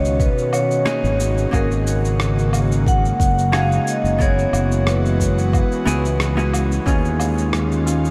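Sunset chillout at 90 BPM with a lightly swung 16th-note feel and a relaxed, warm mood, drifting through suspended ninth chords in a dreamy mix drenched in huge ambient reverb. A ringing vibraphone carries the melody until 6.5 seconds over a dark, clean hollow-body jazz guitar, an airy, breathy chorused pad and a punchy, up-front fingered electric bass with tube saturation, while gritty sampled shaker, woodblock and rim click sit under a deep electronic kick. A barely audible downlifter opens the passage, and a shimmering steel pan enters in the background with arpeggios at 6.9 seconds, its tape echo and shimmer reverb matching the vibraphone and guitar.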